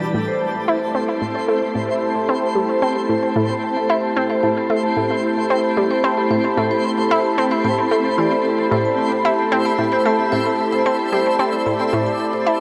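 Ambient, sequencer-driven space music at 112 BPM in A minor, mysterious and expansive, resting on a single Am7 chord where a detuned, resonant sawtooth pad holds sustained chords with chorus. A twinkling granular FM texture sparkles with an octave-up shimmer alongside it, while a metallic, ringing vibraphone plays arpeggios through tape echo and a filter sweep. An up-front, nasal, wave-folded analog pluck drives a riff with chorus and echo, the whole bathed in a long shimmer reverb before a fade-out from 11.6 to 12.6 seconds closes this excerpt of a longer piece.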